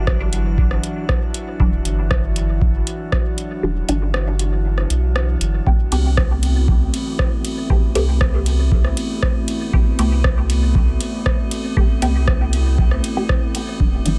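Heard through a digital ambience, this hazy, deep dub techno excerpt moves at 118 BPM in A dorian, shifting from Em9 to Am9. A warbly, lo-fi tape-like pad and an eerie, metallic inharmonic drone, both softened with chorus and reverb, sit behind a round, up-front analog bass, and all three pump to the sidechain. A booming analog drum machine carrying hi-hat, ride and rim click is thrown into dub echo beside an electronic kick, a muted, detuned chord stab enters at 1.6 seconds under a filter sweep, phaser and dub echo, and the kick drops out between 3.6 and 5.7 seconds.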